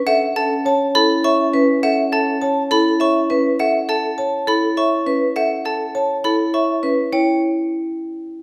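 A ringing, metallic vibraphone with a fast motor vibrato carries the melody up front in this urgent yet meditative minimalist classical pattern piece in 3/4, cut from a longer work, over mellow, round marimba arpeggios and sharp, dry xylophone arpeggios, while a dark, soft-attack French horn holds a second line until 3.4 seconds, all set in a recital hall's reverb as the harmony moves from A to E minor at 7.1 seconds.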